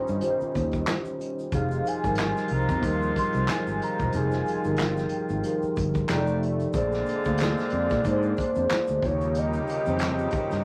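A velvety, detuned synth lead with vibrato sings a late-night melody over mellow tine electric piano and a soft-edged analog pad from the start, joined by fretless bass, a background egg shaker with finger snaps, and a distant, roomy drum kit played with bundle sticks, before an edgy, tight saxophone section adds stabs at 1.5 seconds in this soulful, swung neo-soul R&B groove at 92 BPM in F minor, moving from Eb13 through Fm9, F13 and Bb9, all set in a club reverb with vinyl crackle.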